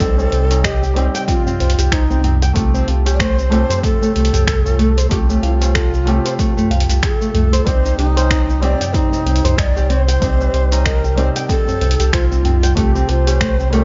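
Warm and lightly reverberant, this mystical organic downtempo fragment at 94 BPM in C dorian, with a gentle 16th-note swing, sets a breathy, chiffy wooden flute melody with vibrato and delay over thumb-plucked arpeggios from a dark flamenco guitar, a felt-muted upright piano whose action noise sits beneath its pumping delayed chords, an ethereal detuned pad held very quiet, a round sine sub bass pumping up front on C, a gritty sampler-style kit of finger snaps, hi-hat and shaker, a punchy layered electronic kick, and a low-tuned ringing tabla entering at 0.2 seconds, all circling between Cm and Fadd9/C.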